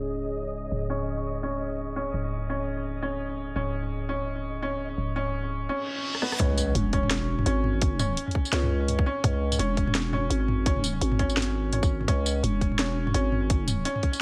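A growling, buzzy 808-style bass anchors this dark, cinematic half-time drum and bass in C# minor at 169 BPM, joined from 0.9 s by a felt-muted upright piano playing soft, intimate arpeggios through tape echo over a deep, moody analog pad with chorus and sidechain pumping and a flickering, grainy texture in the background. A filter sweep builds through the opening as a reverse cymbal from 5.8 s and a drum fill lead into the drop at 6.4 s, where an impact lands and a tight, up-front electronic kick drives alongside a low-pass-filtered kit of cracking snare, hi-hat, rim click, tambourine and toms, all set in digital ambience.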